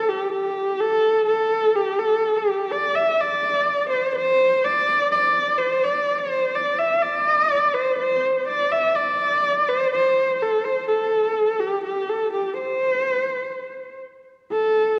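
Proud and vast, this excerpt of Mongolian traditional music moves at 125 BPM in a straight 4/4, set in a C gong mode. A single bowed horsehead fiddle plays solo throughout, its husky horsehair tone sitting up front with a soft attack, expressive vibrato, gliding portamento and a smooth top between G4 and E5. The whole recording rings in a wet concert hall reverb and carries the worn, warbling pitch drift of old cassette tape.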